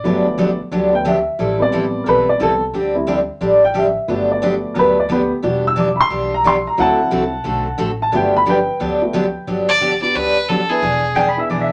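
Country western swing at a brisk 178 BPM in G major with a down-home, swinging lilt, where a dark upright piano takes the lead over full-bodied picked steel-string acoustic guitar and woody pizzicato upright bass until the clear, airy-bowed fiddle takes the melody at 9.7 seconds and a clean pedal steel guitar slides in with a second line at 11.2 seconds, all set in a small, wet room.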